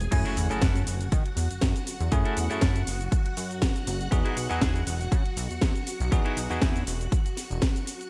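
Bright 1980s-style digital production with light reverb carries this groovy, cosmic nu-disco excerpt at 120 BPM in F# dorian, where a punchy, overdriven electronic kick sits up front beside a house kit with a cracking snare, hi-hat, shaker and crash under gated reverb, a glossy, evolving chorused synth bass plucks through F#m7 and Emaj9, a lush string machine pumps sustained chords, a bell-like tine electric piano with delay and a clean, picked electric guitar riff with chorus and delay round out the arrangement, and a very quiet electronic impact marks the drop between 0.3 and 2.1 seconds.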